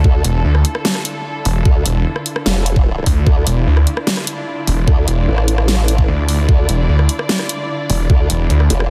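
Driven by a half-time 4/4 pulse at 149 BPM, this heavy, aggressive wobble dubstep excerpt in D minor (tuned to A4 = 436 Hz) sits on a Dmadd9 chord. A knocking, up-front electronic kick opens it from the start, and a layered kit of hi-hat, rim click and huge snare enters at 0.2 seconds. Both sit beneath a chorused, overdriven formant-sweep wobble bass and a snarling, detuned sawtooth bass growling with distortion, while a distant, vibrato-rich chamber string section holds sustained chords through sidechain pumping and a low-pass filter in a dry, dense, heavily limited mix.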